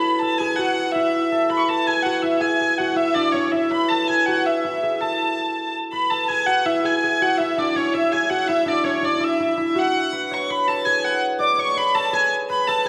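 A warm, wheel-bowed hurdy-gurdy and a bright, thumb-plucked concert harp open together at 0.0 s in this rustic, festive medieval dance, a short excerpt cut from a longer piece. The tempo is a lively 164 BPM in 3/4 with a straight feel, tuned to A4 = 445 Hz. The single hurdy-gurdy player carries the melody from C#5 to D6, with a smooth, even tone that sits up front yet carries a distant quality. Below it, the harp plays a ringing second line from C#4 to D5, slightly softer in the balance. A wet recital hall reverb gives the pair a churchly spaciousness, and the melodic phrase heard over the first 6.1 seconds returns until both instruments stop at 12.9 s.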